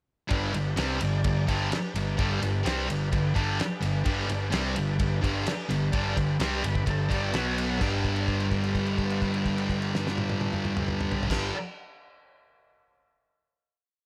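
A straight, stomping garage-rock beat in 4/4 drives this raw, swaggering piece from its start at 0.3 seconds. The cloth-damped drum kit thuds with a fat snare, tight kick and dark, rolled-off cymbals in a small room, while the hollow-body bass plays round, punchy eighth notes that double the guitar riff. Up front, a thick, double-tracked fuzz guitar plays a bright, distorted power-chord riff over a G chord, with a brief B5 chord at 7.3 seconds. Further back, a vintage combo organ plays reedy triads in eighths with heavy vibrato, adding a fill before settling on a held note. At 7.8 seconds the riff gives way to a final G chord that rings out under light reverb until about 11.6 seconds.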